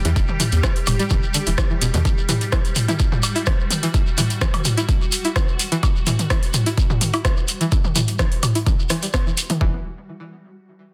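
A punchy, overdriven electronic kick sits up front in this quirky, clinical minimal techno excerpt at 127 BPM in E minor, joined by a garage drum kit with metallic, overdriven hi-hats and rim clicks, tape-warm electronic toms and percussion blips, a grainy, close shekere, a rubbery, hollow square bass that pumps with the sidechain until 2.0 s and briefly returns at 9.6 s, a nasal, swarming, detuned, granular drone with built-in reverb, and a twangy, string-like resonator pluck riff with chorus, digital delay and a filter sweep running until 9.6 s, set in a dense, heavily limited master with light reverb.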